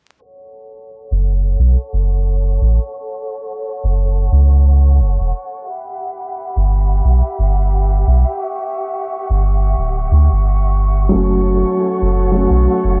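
A swung sixteenth-note feel in 4/4 sets an 88 BPM, melancholic trip hop groove in this dark fragment cut from a longer piece. A bowed chamber violin section holds rich, vibrato-laden chords throughout, its tone roughened by vintage 12-bit sampler grit and a low-pass filter that sweeps across the whole passage. A very quiet tube shaker, close and acoustic with a group handclap, ticks beneath, and from 1.1 seconds a deep, round dub sub bass sits up front with a soft, sustained body. At 11.1 seconds a mellow upright piano enters, woody and slightly detuned, with audible action noise, tremolo and tape echo. The recording is dry and gritty, coloured by transformer saturation and vinyl crackle.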